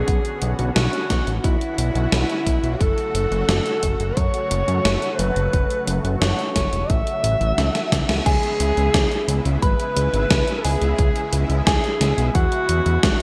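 A punchy, layered electronic kick and a gated 80s drum machine of snare, hi-hat and crash cymbal, overdriven and drenched in gated reverb, set a straight 88 BPM synthwave pulse in 4/4, with a drum fill and a band accent leading into a new section at 8.3 seconds. A fat, detuned sawtooth analog bass with tube saturation and a silky, nasal analog string pad with ensemble chorus both pump under sidechain beneath a breathy alto saxophone melody, played in a jazz style with subtone, scooped notes and vibrato and echoed by digital delay, over chords moving from Bmadd9 to F#m and then C#m7. From 8.3 seconds a soft FM synth bell adds a pure, mellow second line with chorus, phaser and delay in the background, and this nostalgic, cinematic clip from a longer piece sits in a plate reverb with bright 1980s-style digital production.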